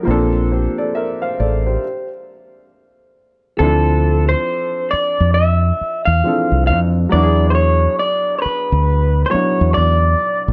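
A slow 4/4 groove with a lazy sixteenth-note swing sets a sultry, introspective neo-soul and R&B mood in this short cut from a longer piece. A warm baby grand piano plays the accompaniment, with a deep dub fingered electric bass sitting round and dark beneath it, both up front. The groove halts in a stop from 1.8 to 3.6 seconds, and then a lo-fi electric guitar through a small old amp enters with the melody. The guitar is fingered, compressed and slightly broken-up. The harmony moves from Bbmaj9 to Dm9 and then to E7 at 7.1 seconds. Light reverb and small room ambience give the whole a close, intimate feel.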